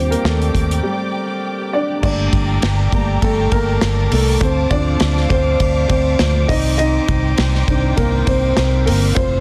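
Piano-driven pop in G minor at 101 BPM with a swung sixteenth feel, this dramatic, driving excerpt is led by a dark, woody upright piano whose audible action noise and boxy, intimate tone stay up front, taking solo turns throughout, including through a break from 0.8 to 2.0 seconds. A punchy, foam-muted electric bass with a round, amped low end and a smooth studio drum kit with a tight kick and a rolled-off top sit close beside it, while a distant, veiled string section holds lush con sordino chords with vibrato and soft attacks. Chords move from Ebmaj7 to Gmadd9 at 2.0 seconds, then through Dm7 and Cmadd9, all within light small-room reverb and a dense, heavily limited master.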